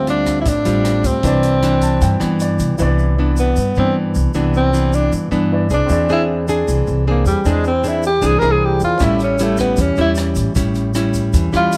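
Sunny and relaxed, this bossa nova excerpt moves at 155 BPM in a straight 4/4, centred in C major, with harmony drifting from Dm11 and Cmaj9 through Eaug7 to A7. A breathy tenor saxophone sits up front with a mellow, subtoned jazz voice, vibrato and scooped notes, bathed in plate reverb, and takes a solo from 2.8 seconds onward. Beside it, a fingerpicked nylon-string guitar plays classical-style accompaniment, also up front, while a woody, thumpy upright bass with gut strings anchors the low end in pizzicato. A baby grand piano stays in the background with a warm, natural tone, adding a fill at 1.6 seconds. The open jazz kit, with hi-hat, rim click and a boomy kick, drops out near the start of the solo and returns at 9.0 seconds, while a grainy, close egg shaker adds a bright sparkle throughout, all set in a light reverb.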